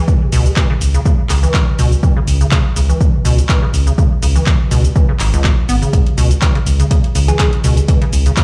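A squelchy, hollow square-wave acid bass riff opens this driving, trippy acid house excerpt at 123 BPM in C# minor, its resonant filter plucks decaying through subtle chorus, cassette tape grit and tape echo while sidechain pumping makes it breathe against the beat. Underneath, a round, deep analog bass built from detuned sawtooth, sine and triangle tones sustains low and dark, also pumping with the sidechain, from 0.3 seconds. A punchy electronic kick, re-recorded in a small room, anchors the 4/4 groove alongside an analog drum machine supplying handclaps, hi-hat and shaker with a light 16th-note swing. The whole passage sits on a single C#m7 chord, and at 7.3 seconds a gentle, tine-like FM pluck resembling a thumb piano flickers briefly in the background through chorus, phaser and tape echo. The sound is dry, yet carries the weight of a big system played into a bare room with large studio reverb.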